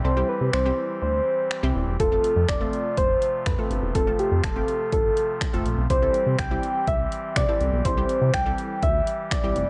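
Dance-pop at 123 BPM, energetic and bittersweet, this short cut from a longer piece sets a round, keys-like FM synth lead with vibrato and digital delay up front over a detuned, chorused analog pluck, a pipe organ on a soft oboe reed stop and a glossy, nasal synth bass, those three pumping with sidechain, while a punchy analog drum machine enters at 0.5 seconds with kick, finger snaps and hi-hat, a barely audible downlifter sits under the first 2.0 seconds, and the harmony moves from C to F and back to C in light reverb.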